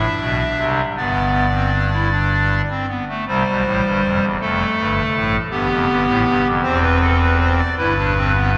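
A solo pipe organ on a hollow clarinet reed stop, voiced in a romantic manner with tremulant and placed up front, carries this contemplative yet driving baroque-style three-part fugue in 6/8, ranging from deep bass notes up to the upper register. A wet church reverb with a long 3.4-second tail surrounds it, heard from further back in the room. Cut from a longer piece, the organ plays from 0.0 to 8.6 seconds, with a second section starting at 3.3 seconds that moves through C, F, G7 and C/E before settling on Em/G.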